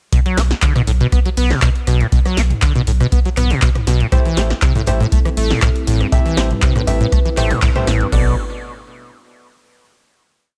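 A dry, gritty hardware recording with a cassette-tape grain and small room ambience sets the tone for this hypnotic, raw acid house piece in B phrygian, running at 120 BPM in a straight 4/4. A booming analog drum machine drives a deep, four-on-the-floor kick with crash cymbal up front, while a punchy, overdriven drum machine adds handclaps, hi-hats, rim clicks, toms and a punchy backbeat snare. Beneath them a very quiet acoustic jazz kit, dark with a rolled-off top, plays a looped and edited breakbeat on hi-hat and snare. A squelchy, resonant sawtooth acid line of 16 steps, with accents, slides and filter sweeps, runs through overdrive, analog chorus and tape echo, pumping against the kick alongside a round sine sub bass playing off-beat notes. From 4.1 seconds a clear, worn grand piano stabs syncopated Am7 chords with tape echo, and at 4.6 seconds a moody sawtooth and triangle pad with a sub octave fades in under chorus and phaser. 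After a band accent, the track resolves on a final Bm7 chord at 8.1 seconds.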